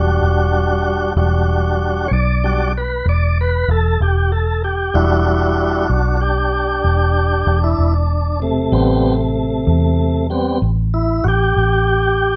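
A tonewheel organ leads this brooding, soulful blues, holding sustained chords through a slow rotary speaker with a light overdrive that gives its full tone a gentle grit and vibrato. Beneath it, a vintage muted electric bass played with the fingers supplies a dark, round low end, its foam-muted sound sitting up front alongside the organ. The tempo is slow, at 63 beats per minute in a 12/8 metre with a straight feel, set in E minor. The harmony rests on Em9 before moving to Am9 at 8.7 seconds. A light reverb surrounds both instruments across this short section, cut from a longer piece and lasting 12.4 seconds.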